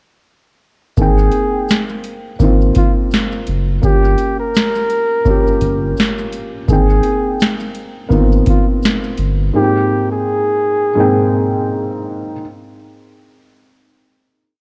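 The recording has a hazy cassette-tape texture, with light reverb and a digital ambience around a mellow, cosy lo-fi hip hop piece in a relaxed, swung groove. A felt-muted upright piano sits up front, boxy and intimate with audible action noise and a cassette-worn, filtered tone, playing rootless chords in a pushed rhythm with grace notes, repeated like a sampled loop. A dark, close-miked flugelhorn carries a short looping jazz melody with light vibrato and a punchy edge, softened by a low-pass filter. Underneath, a saturated sub bass plays a sparse, thick line with muted ghost notes and chromatic approach notes, while a booming analog drum machine, re-recorded in a large room, lays down a soft beat with a deep kick, crisp snare, metallic hats and shaker sixteenths. Everything begins at 1.0 seconds; the drums and bass drop out around 9.4 to 9.5 seconds, the horn ends at 11.9 seconds, and the piano closes the piece at 12.4 seconds.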